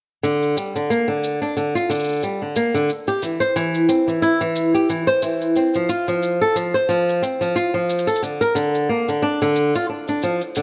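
Folktronica with a warm, delicate mood and a gentle sixteenth-note swing, where an up-front fingerpicked flamenco guitar with fresh strings plays arpeggios softened by a low-pass filter and trailed by delay, while a quieter electronic shaker in studio reverb keeps time from 0.2 to 10.6 seconds, all set in a moderate plate reverb with a small-room ambience.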